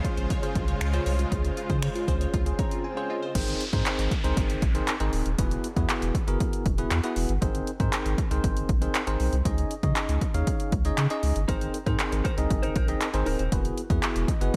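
A bell-like tine electric piano, a lush, airy supersaw pad and a glassy wavetable pluck tracing arpeggios in the background open this carefree, summery dance-pop excerpt in Ab major at 118 BPM. An overdriven deep house drum kit with a punchy kick sits up front alongside crash cymbal, finger snaps, handclaps and hi-hat, while a round sine sub bass enters at 0.2 seconds, its pumping tied to the kick like the piano, pad and pluck. The pad and pluck drop out after 3.3 seconds, following a brief break, leaving the piano, with its subtle chorus and slapback echo, to carry the chords over the drums and bass. An electronic swell and downlifter drift in the background between 2.4 and 7.4 seconds, and a bright, picked clean electric guitar plays a short, compressed riff near the end. The harmony moves through add9 and sus2 colours, and light reverb with digital ambience surrounds the mix.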